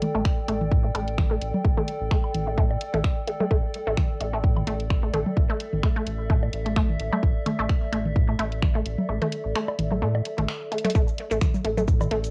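A clinical, quirky slice of minimal techno, cut from a longer piece, moves at 129 BPM in 4/4 with a light swing on the sixteenths. A squelchy, resonant blip pluck carries the riff up front, its phaser, tape echo and sidechain pumping colored by cassette grit as a filter sweep runs across it until 10.9 seconds. Beneath it, a round, deep analog bass pumps in the low register, while a nostalgic, lo-fi pad warbles with chorus and its own reverb across the upper range. A punchy electronic kick sits forward, backed by a house kit of finger snaps, bright hi-hats and shaker, plus electronic toms, woodblock, congas and bongos with tape echo. The kick drops out from 9.1 seconds, a band accent and drum fill follow, and the drop lands at 10.9 seconds, all with the light reverb and cassette character of a home recording.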